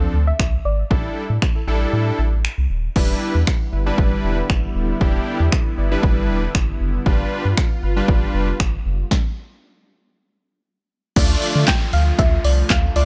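A punchy analog drum machine sits up front from 0.4 seconds, its kick and snare carrying a tape-warmed character that sounds re-recorded in a small room, with hi-hat, handclaps, finger snaps and crash cymbal filling out the groove. This bittersweet, confident dance-pop cut from a longer piece moves at 117 BPM in a straight 4/4. A big, bright polysynth, fat and detuned with a wave-folded edge, drives the accompaniment alongside a deep, round analog bass with a filter sweep, and both breathe with sidechain pumping. A soft, gentle pluck with a dark, rounded tone carries the melody at the opening and again near the close, coloured by chorus and dub echo. From 3.0 seconds a smooth, detuned supersaw adds low-level sustained chords with a moving notch. The harmony travels from Dm7 and A7sus4 through Em7 and G7 before settling on Dm, where an electronic downlifter enters at 11.2 seconds, all in a dry, close mix with little reverb.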